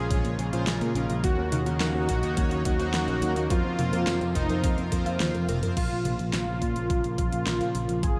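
Soaked in plate reverb, this dreamy, moody synthwave cut opens with a smooth, evolving supersaw melody colored by cassette tape and diffuse ambient delay over a thick, detuned unison pad with chorus and sidechain pumping, while a mellow round pluck plays arpeggios and glossy pulse-wave polysynth stabs run through analog delay until 5.7 s, all above a growly picked electric bass, an overdriven, knocking electronic kick and a pop kit with fat snare, bright hats, crash and toms that plays a fill at 5.3 s before the cinematic final stretch.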